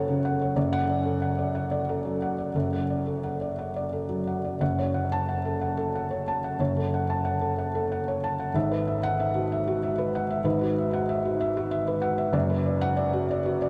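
Wistful and reflective, this short excerpt of neoclassical minimalist piano drifts in 6/8 at roughly 58-64 BPM, counted in dotted quarters, with a loose, rubato feel in F# minor and tuning at A4 = 442 Hz. A felt-muted upright piano plays alone for the full 13.7 seconds, spanning F#1 to A5, its tone soft, dark and intimate, with thick felt and audible action noise giving it a vintage character. The piano sits up front, yet a diffuse ambient delay trails behind it, and a huge ambient reverb with an 8.6-second decay soaks the whole mix in a dreamy wash. The harmony moves from F#m to D/F# early on, then a new passage from 4.6 seconds returns to F#m before shifting to Eadd9/G# and settling on Bm/F#. Cut from a longer piece, it feels like a hushed, private moment suspended in space.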